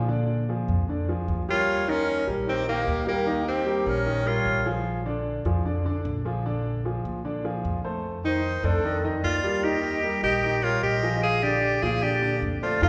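Lively and sophisticated, this jazz excerpt moves at 151 BPM in a straight 4/4, centred on Bb mixolydian and cut from a longer piece. A concert grand piano with deep bass and a natural, up-front tone plays the accompaniment throughout, joined by a woody, thumpy pizzicato upright bass on steel strings. At 1.5 seconds an edgy tenor saxophone takes the melody with forceful, punchy phrasing and scooped notes, while a breathy metal flute carries a second line above it with soft attacks, vibrato and lifted highs. Both horns drop out around 4.7 seconds. The flute returns near 8.2 seconds and the saxophone just after at 8.3 seconds, sitting up front in a soloistic jazz style. Rich chords such as Bb13, Eb9 and F13 colour the harmony, and everything rings in a wet recital-hall reverb typical of a church or concert hall.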